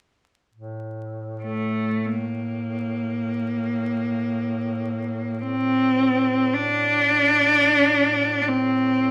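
A warm duduk drone on a low A opens this Caucasian folk lament at 0.5 s, sounding distant and roomy with vibrato and scooped notes in a folk style. At 1.4 s a single bowed cello enters up front with a clear, focused melody that moves between A3 and D4, its tone carrying vibrato. The music flows in free time in A Phrygian, creating a mournful, solemn mood. A moderate large-studio reverb surrounds the sound, and a vinyl crackle adds an aged patina. Both parts continue together until the passage, cut from a longer piece, breaks off at 9.1 s.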